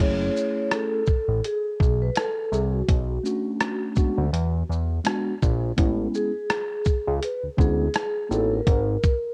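A swung hip hop groove from a gritty, pitched-down, sampler-style boom bap kit with a thumpy kick, hi-hat, rim click and shaker enters at 0.4 s alongside a fat, detuned sawtooth analog bass with a moving filter sweep, while a clean tine electric piano heard through built-in speakers accompanies a dark, ringing soft-mallet vibraphone melody with motor vibrato and analog delay, both keyboard parts tinged by cassette tape, in this cool, mellow jazz-hop excerpt cut from a longer piece.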